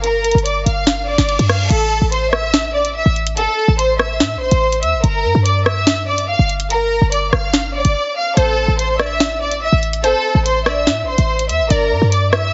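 Heavily compressed, radio-like sound with a dull top capped at 7.7 kHz, light reverb and a digital ambience frames this dark, cold drill cut, taken from a longer hip hop piece at 144 BPM in a half-time 4/4 feel, in A phrygian and tuned to A4 = 436 Hz. Up front, a lush symphonic violin section carries the melody with bowed vibrato and a smooth, focused top, softened by a low-pass filter and echoed by digital delay, over chords moving between Gm7 and Am. A punchy, tight 808-style bass with a sine body, a noise layer and quick decaying notes sits equally forward, while the electronic drill kit brings a sharp snare, rim clicks, bright hats and crash cymbal. A reverse cymbal rises faintly in the background at 1.1 s, and after a brief silent gap at 8.0 s, a crystalline, detuned wavetable pluck with a sub octave, filter sweep, chorus and digital delay adds a second line from 8.4 s to the close.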